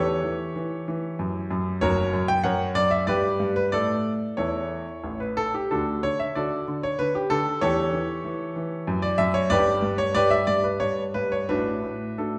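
In a 3/4 with rubato at 87-97 BPM, this graceful, playful classical-period sonatina fragment in D major features a clear, intimate solo grand piano, up front with audible action noise, ranging from F#1 to G5 through chords like A7/E, F#m, G and Dmaj9/F# before settling on D/A, all bathed in a wet recital hall reverb with a 1.4-second decay that lends a soft, rounded top.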